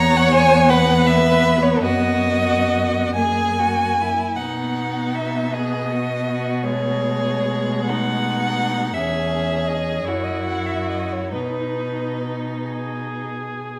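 Warm and serene, this short passage from a slow romantic movement for string quartet sways in 6/8 at around 44-57 BPM, counted in dotted quarters, with a rubato feel in B major. Up front, the first violin carries the melody with expressive vibrato and portamento, its tone smooth at the top and warm in character. A second violin, set back at a distance, spins an even, rich second line beneath it, while the viola fills in the accompaniment with a smooth, mellow glow. The cello sits close and up front, anchoring the bass with a full, resonant sound and steady vibrato. All four bowed players sound together from the start and settle onto a B major chord at 11.3 s; the melody falls away at 12.6 s as the others hold on toward 13.8 s. A generous recital hall reverb surrounds the ensemble, giving the unhurried harmony a soft, spacious halo.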